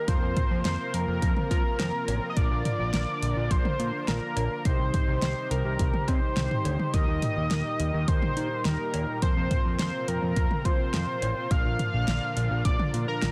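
Synth-pop at 105 BPM, bright and nostalgic, cut from a longer piece, where a bold, detuned octave-doubled sawtooth lead carries the melody up front with chorus and tape echo over mellow analog synth brass, a warbling vintage pad with ring modulation, a fat, thick analog bass and an electronic pop kit of punchy kick, fat snare, metallic hats, cowbell and toms, all cycling through Fsus4, Bb, Cm and Eb in light digital ambience and a dense, heavily limited modern master.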